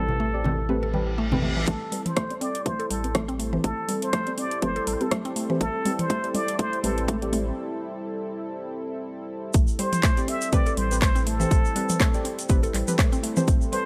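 Hypnotic afro house in A minor at 122 BPM with a swung 4/4 feel, where a plunger-muted jazz trumpet with vibrato and scooped notes sings over a smooth detuned pad, woody mallet-like plucks, dark background chord stabs and a round sine sub bass, as ringing low-tuned congas and a reverse cymbal open into a punchy, up-front electronic kick and metallic-hatted drum kit at 1.7 s, building with filter sweeps on the trumpet and stabs and a break before the drop at 9.5 s adds a grainy tube shaker, all in light reverb with dub echo trailing the trumpet, plucks and stabs.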